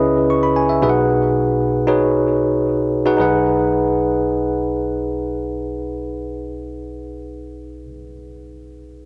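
Pop at 114 BPM in B major, this nostalgic, uplifting fragment cut from a longer piece features a solo tine electric piano, bell-like and clean, heard up front through built-in speakers with cassette tape character and tape echo, moving from C#m7 to B6 in a light reverb, captured as a home recording on cassette.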